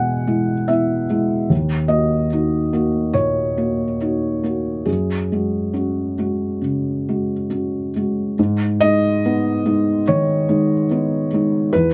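A felt-muted upright piano opens this short, melancholic cut from a longer neoclassical minimalist piece, playing alone throughout its roughly 11.9 seconds. The tone is dark and intimate, the thick felt softening every note, while the audible action noise of the instrument sits up front in a close, detailed, nearly dry sound. At about 71 BPM in 4/4, the pulse is loose and rubato, with the uneven beats giving the playing a wistful quality. In G# minor, the harmony drifts from E through D#m7 and F#sus2 before settling onto G#m at 8.4 seconds, where a new passage begins. The part spans from D#2 up to G#5, pairing deep low notes with a gentle upper register.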